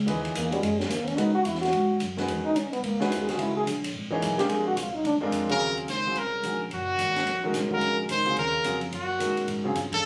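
A brilliant, punchy trumpet with scooped notes enters up front at 5.5 s over a breathy trombone that solos through the opening, while a clear baby grand piano, a woody pizzicato upright bass and an open jazz kit with dark cymbals and a boomy kick drive this hypnotic, cool modal jazz excerpt at a swinging 217 BPM, settling into Eb dorian and closing on a band accent at 9.9 s in a roomy club sound.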